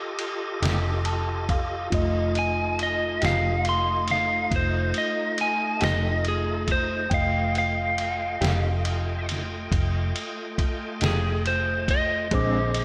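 A slow 12/8 blues groove with a gritty, soulful mood opens on a tonewheel organ holding full chords through a slow rotary speaker and a mellow tine electric piano with slapback echo. They are soon joined by a muffled, pitched-down sampler-style drum kit with a thumpy kick and fat snare, a round, foam-muted electric bass up front, and a dark, lo-fi rhythm guitar with tremolo in the background, while the electric piano slips in a brief fill around 0.6 seconds. A slightly broken-up lead guitar then takes the melody from 2.4 seconds, all set in a lush hall reverb that gives this short excerpt a big arena sound.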